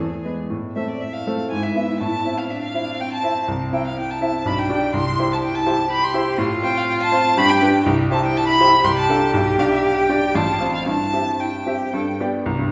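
Moving in 3/4 at a quick 111-127 BPM with a flexible, rubato feel, this excerpt from a classical-period movement for piano trio sounds cheerful and spirited. It opens in A minor and brightens into C major from 6.4 s, the harmony passing through clear cadential chords before settling on G near the close. The violin carries the melody with a rich, smooth, even bowed tone and vibrato, sitting up front yet with a slightly distant quality. Beneath it the cello sings a second line in its own full, vibrato-laden voice, while the baby grand piano supplies a crisp, natural accompaniment with short sustain, also placed up front. The whole trio is heard in a recital hall whose wet reverb lingers for 1.7 s, lending the performance the resonance of a church or concert space.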